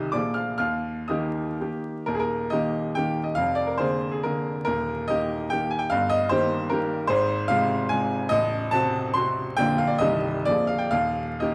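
Vinyl crackle sits beneath a close, detailed recording of a bright baby grand piano, heard up front in a moderate recital-hall reverb. This short excerpt from a longer classical work is a graceful, rustic romantic dance in 3/4, played solo with dotted rhythms and free rubato, its brilliant tone spanning A0 to F6. After a brief opening phrase, a new section begins at 2.1 seconds and passes through harmonies such as Fm/Ab and Adim7 before settling on Eb at 10.9 seconds.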